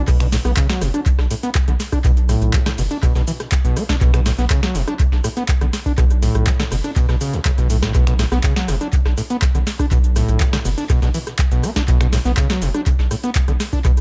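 Raw and driving, this acid house excerpt sits in a full-on drop, where a squelchy, gritty overdriven acid bass riff with resonant filter sweeps, distortion, lush chorus and analog delay rides over a round analog bass that is dark and sustained, pumping against the beat. A dry, deep electronic kick drum anchors the groove, while a booming analog drum machine adds a crisp snare, metallic hi-hats, handclaps, finger snaps, rim clicks, shaker and crash cymbal touched with tape echo. A distant, very quiet soul drum kit with a rolled-off top sits far beneath it all in a small, echo-heavy room.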